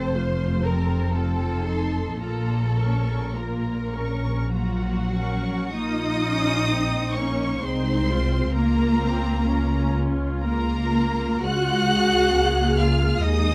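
In a slow, rubato 3/4 that drifts between 47 and 70 BPM, this solemn, elegiac movement for string orchestra unfolds in Bb minor, cut from a longer piece. The full ensemble plays throughout its 13.5 seconds: a violin section carries the melody high between Gb5 and Gb6 with expressive vibrato, while a second violin section traces a lush, somewhat distant line an octave below. Violas supply smooth, even accompaniment, and the cellos add an intense bass voice with a rich body and a smooth top. Beneath them, the up-front double basses bow with a soft attack and portamento, sitting loudest in the blend. The harmony moves from F and F7 into Bbm at 2.2 seconds, later settling onto Bbm/Db and Db, all captured with close, detailed microphones and a light reverb.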